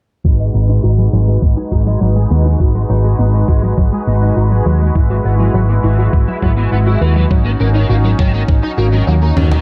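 This moody, nocturnal synthwave excerpt in G# minor opens at a 102 BPM straight 4/4 with a soft, smooth supersaw holding detuned sustained chords, a round analog pluck spinning arpeggios in the background through chorus and digital delay, a thumpy, sampler-style electronic kick, and a dark, amped hollow-body short-scale picked bass sitting up front with tube saturation. The bass and supersaw both carry sidechain pumping, and filter sweeps run through the bass, the pluck and the guitar. A biting, overdriven, double-tracked electric guitar riff joins at 0.4 s, set low in the mix and colored by ensemble chorus, a low-pass filter and digital delay. The harmony moves from G#m7 to Esus2/G# and on to D#m7/G#, all over a G# bass. The kick drops out at 8.6 s, and a brief fill of gritty, saturated acoustic toms in a bright stone room lands at 9.4 s. A small, filtered room ambience surrounds the whole excerpt.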